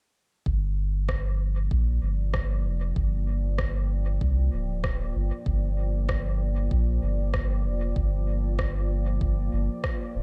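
The sound is dark and warm, with little reverb on the mix as a whole, giving this ambient dub excerpt a deep, spacious mood. A soft dub sub bass and an electronic kick drum open together at 0.5 seconds, the bass round and up front with a fast attack and sustained notes built from triangle and square waves, and the kick deep and produced, re-recorded in a large room. At 1.1 seconds an electronic rim click joins, also re-recorded in a large room and trailed by a dub echo. A dark, moody ambient pad arrives at 1.3 seconds, holding sustained chords made of detuned sawtooth unison voices over a sine sub octave, with a slow attack, long release, chorus and its own built-in reverb. The harmony rests on a single Gm7 chord throughout, while the drums sit in a relaxed swung 4/4 groove beneath the sustained pad.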